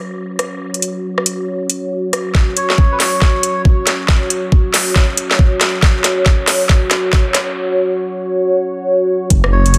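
A dense, heavily limited mix bathed in moderate spring reverb carries this brooding deep dubstep build-up at 138 BPM in half-time with a swung 16th feel, where a moody, full-bodied analog pad sustains an F#5 chord under a filter sweep and chorus. A garage kit of cracking, soft-clipped snare, rim click and metallic, high-passed hats sits up front in a small room, joined at 2.3 s by a knocking, tape-warm electronic kick for a drum fill that gives way to a break, while a reedy, breathy melodica drifts in at 2.6 s through a low-pass filter and dub echo. At 9.3 s a deep, rumbling detuned saw bass lands on F#1 with tube saturation, adding beating weight to the dark close of this cut from a longer piece.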